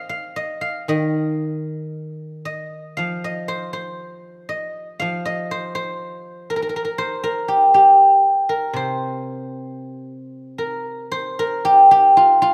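A solo guzheng opens this brief passage from a longer piece of Chinese traditional music, its fingerpicked strings ringing out silvery and close to the ear. The mood is one of longing and elegance, set in the C yu mode at a slow 59 BPM in 2/4, though the beats fall unevenly and the pulse breathes freely in rubato. The instrument ranges from C3 up to F5, its acoustic tone warm throughout. A light reverb gives the sound a gentle sense of space around it. At 11.1 seconds the music turns to a new section, which carries on until the passage is cut off at 12.5 seconds.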